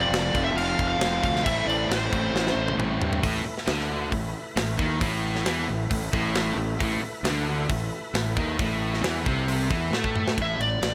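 A driving, menacing hard rock passage in straight 4/4 at 134 BPM in A minor, cut from a longer piece. A tight metal drum kit sits up front with bright cymbals, a medium-tuned snare and a saturated, gritty edge, breaking into fills at 2.3 and 9.9 seconds. Beneath it a growly fuzz bass, fingered and overdriven, anchors the low end, while a biting, double-tracked overdriven guitar and two sludgy distorted guitars, one dark and one barely audible, grind out riffs in the background over a move from F to A minor. A smooth, up-front lead guitar states a short melody at the opening and returns briefly at 10.4 seconds as the harmony lands on A5. Underneath, a very quiet, thick overdriven tonewheel organ holds sustained chords through a slow rotary speaker with chorus vibrato, stopping at 10.3 seconds, and light small-room reverb frames the whole.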